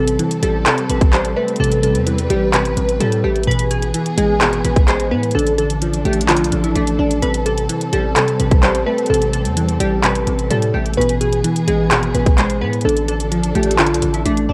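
Melancholic and menacing, this short cut from a longer hip hop track moves at 128 BPM in a half-time trap feel, set in A minor with the tuning sitting slightly below standard pitch. A glassy digital keys melody carries the tune with a fast, decaying attack, colored by chorus, cassette tape saturation and an analog delay, while a crystalline wavetable pluck with detuned unison and a filter sweep fills in the accompaniment beneath it. A lush, bowed symphonic string section holds sustained chords with expressive vibrato and a soft attack, sitting slightly lower in level than the other parts. Underneath, a hard-hitting 808-style bass delivers punchy, heavy sine tones with a noise layer, and the trap drum kit enters at 0.1 seconds with an overdriven, hard-clipped kick, bright hi-hats and handclaps pushed up front. The harmony cycles through Am7, E/A and Dm/A over an A pedal, and the whole piece carries the hazy character of a home cassette recording with light reverb and digital ambience.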